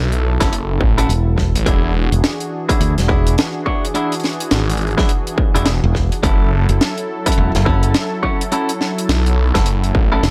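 Funky and gritty, this short glitch hop excerpt moves at 105 BPM in 4/4 with a 16th-note swing, set in F# minor and cycling from F#m7 to E9 at 1.7 seconds and back to F#m7 at 6.2 seconds. A distorted, layered electronic kick sits up front alongside a dry, acoustic reggae kit whose high-tuned snare and hi-hat carry a small room ambience. Two bass parts fill the low end: a swirling, thick detuned saw bass treated with phaser from the start, and a bright, direct fingered electric bass with tube saturation that joins at 1.1 seconds. Clean, twangy electric guitar stabs, picked and compressed with a scooped tone, arrive at 0.4 seconds carrying 12-bit sampler grit, sidechain pumping and delay. Underneath, a smooth analog pad holds sustained chords with chorus, the same sampler grit and pumping, and the overall mix stays close and dry with little reverb.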